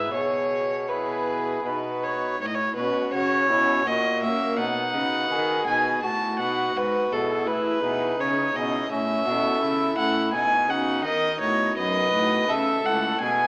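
A close, nasal period-style violin carries the melody up front in this flowing, serene baroque-style sonata movement in 3/4 at 83 BPM, joined by a dark, distant second violin, while a thick pipe organ on foundation stops and a reedy gut-string cello with light vibrato form the continuo beneath, the ensemble heard through a small speaker in a wet recital hall in a passage cut from a longer piece.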